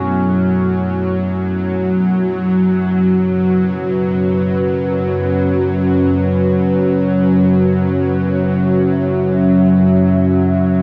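Dark and desolate, this free-time dark ambient drone excerpt rests on a deep, moody pad of sustained chords, thickened with chorus and shimmer reverb, over a tense, string-like bowed drone with vibrato, both placed up front. A warm duduk with scooped notes sounds only in the first 0.6 seconds, distant and trailing shimmer reverb and delay, while a quartz singing bowl rings with slow beating, barely audible, throughout. The whole sits in a cavernous cathedral reverb with a cassette-tape grain, its rootless chords drifting from Dadd9/F# to A69/F# at 1.5 seconds.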